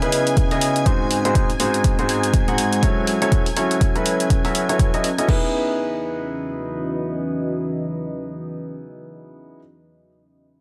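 Uplifting and feel-good, this piano house excerpt moves at 122 BPM in 4/4 with a 16th-note swing, set in E major and tuned slightly low to A4 = 436 Hz. A warm grand piano carries the riff up front, its long sustain softened by a low-pass filter and trailed by tape echo, with sidechain pumping tying it to the beat. Beneath it, a deep, moody ambient pad of detuned sawtooth and sine layers with a sub octave warbles through chorus and its own reverb, slow to rise and long to fade. Shimmering vintage string-machine violins hold bright chords in the background through 5.3 seconds, while a punchy, tape-toned electronic kick joins at 0.4 seconds alongside the analog drum machine's crash and hi-hat, both dropping out around 5.4 seconds. The harmony moves from C#m7 through G#7 and F#m7 before settling on Emaj7 at 5.3 seconds, leaving piano and pad in a light, small-room ambience.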